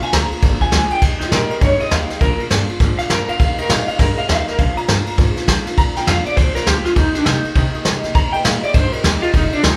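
Recorded live in one room with a moderate studio reverb, this rowdy, retro rockabilly excerpt swings at 202 BPM over Bb and Eb chords, opening with a clean electric guitar solo for its first 1.0 s before that twangy, slightly broken-up lead through a small old amp carries the tremolo-laced melody, backed by a bright picked archtop with audible finger squeak, a woody, thumpy gut-string upright bass, and an up-front brush kit with dark cymbals and a punchy kick.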